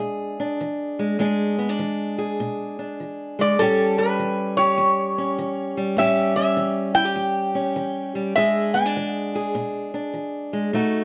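Acoustic country blues with a laid-back, soulful mood, moving at 100 BPM in 4/4 with a swung eighth-note feel in E mixolydian, cut from a longer piece. A fingerpicked steel-string parlour guitar, bright and boxy with fresh strings and audible finger squeak, carries the accompaniment throughout over E7 and A7, while a metal-body resonator slide guitar, nasal and metallic, played with fingerpicks and bathed in plate reverb, sings the melody up front from 3.4 to 9.5 seconds. Both guitars sit close in a moderate studio room.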